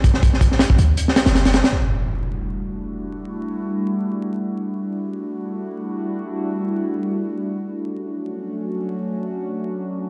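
Drum and bass with a jungle edge, this dark, atmospheric excerpt moves in free time around E dorian, opening on a brief drop where a crunchy breakbeat kit and a deep, boomy 808-style bass hit together until about 1.7 seconds. The drums sit up front with a punchy kick, a high-tuned snare and hi-hat, their sound saturated and gritty with a rolled-off top, while the bass carries a sine body with a noise layer, a fast attack and a mellow decay. At 1.7 seconds an electronic impact lands up front as the harmony shifts to Em11. From 2.3 seconds a warbly, tape-like pad takes over with nostalgic, lo-fi, detuned sawtooth and triangle tones, slow to rise and long to fade, colored by chorus, phaser, its own reverb and vintage 12-bit sampler grit, before settling on Dmaj7 at 7.7 seconds. The whole mix sounds like it is played through a big sound system in a bare room, wrapped in lush hall reverb and a layer of vinyl crackle.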